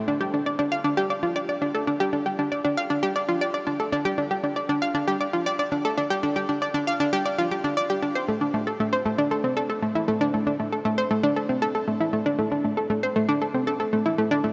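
Hypnotic and cosmic, this ambient excerpt features a lone analog pluck playing from 0.1 to 14.5 seconds, its round, bright sawtooth-and-square tone underpinned by a sub octave and shaped by a filter pluck with a fast attack and short decay. Chorus and analog delay thicken the up-front synth, which sits within a huge, wet reverb tail lasting 7.3 seconds, giving the straight 4/4 pulse a vast, floating space.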